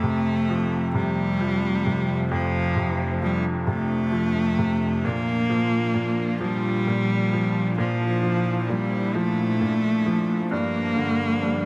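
Heartfelt, tender pop in a straight 6/8, cut from a longer piece, with a clear, focused bowed cello carrying the melody up front, its close vibrato trailed by tape echo. A bright, woody upright piano with long sustain accompanies it throughout, while an airy, breathy pad with a vintage, warbling chorus sits softly in the background from 0.1 seconds. The harmony moves from F to Bb at 5.0 seconds and on to Gm at 10.5 seconds, all within the light reverb of a small room.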